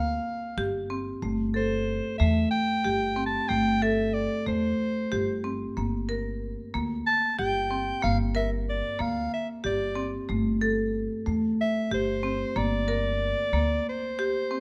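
Close, detailed microphones and light reverb frame this pensive, urgent fragment of contemporary chamber music in 7/8, cut from a longer piece. A warm soprano saxophone carries the jazz-style solo melody with light vibrato, subtone and a smooth top, while a bright, airy marimba played with hard mallets spins percussive arpeggios up front. A woody pizzicato upright bass with steel strings anchors the harmony until it drops out at 13.8 seconds, as the chords shift between Gm7 and Am7/G.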